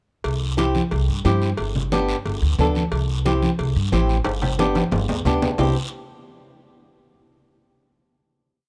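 Sunny and danceable, this brief, complete cumbia piece opens with woody pizzicato upright bass, ringing cowbell and timbales and a raspy guiro together at 0.2 seconds, adds thick-skinned congas playing off-beat hand drums, then brings in an up-front, fingerpicked flamenco guitar playing rhythmic triad chords over a C and G groove, with a drum fill from 4.3 seconds leading to a final chord at 5.6 seconds in a dry, close small-room sound.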